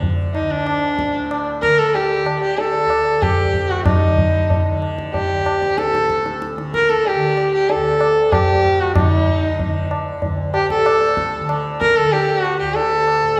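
A buzzing, shimmering tanpura drone and close, dry, high-tuned tabla open this meditative, serene Hindustani classical excerpt at 94 BPM in 4/4, and at 0.3 seconds a rich, biting bowed sarangi with light vibrato, gliding portamento and sympathetic strings takes the melody up front, all set in a reverberant concert-hall space.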